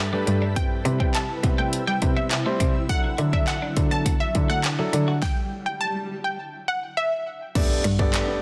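A dense, heavily limited modern mix with light digital ambience carries this euphoric, carefree dance-pop passage in G major at 103 BPM: punchy, layered electronic drums with a fat snare and metallic hats sit up front, while a bowed cello bass with vibrato and portamento, open grand piano accompaniment and a shimmering, detuned pad all pump with sidechain. A twangy, clean twelve-string electric guitar riff with lush chorus sits in the background, and a round analog pluck melody carries chorus and tape echo, until a stop at 5.2 seconds gives way to an electronic swell and an impact at 7.6 seconds, where a very quiet, squelchy resonant blip pluck adds arpeggios.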